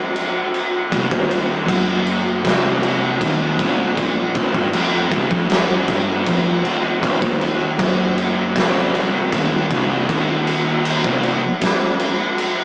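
A slow, straight 4/4 pulse drives this heavy, brooding slice of stoner and doom metal, cut from a longer piece. An oversized, low-tuned acoustic drum kit starts at 0.2 seconds and sits up front, with a punchy kick, fat snare and dark crash cymbals, its saturated, gritty tone heard in a bright stone room with a rolled-off top. At 0.9 seconds two thick, picked fuzz guitars enter on a low, distorted riff that hangs back in the mix, one darker in colour and the other warmer. A fuzz-laden, overdriven electric bass plays deep below them, growly but very quiet. The guitars and bass stop at 11.4 seconds, and the drums carry on alone until 12.6 seconds. A light reverb and a rough rehearsal-room sound with a small-speaker character give the whole thing a raw, cramped weight over a single minor chord.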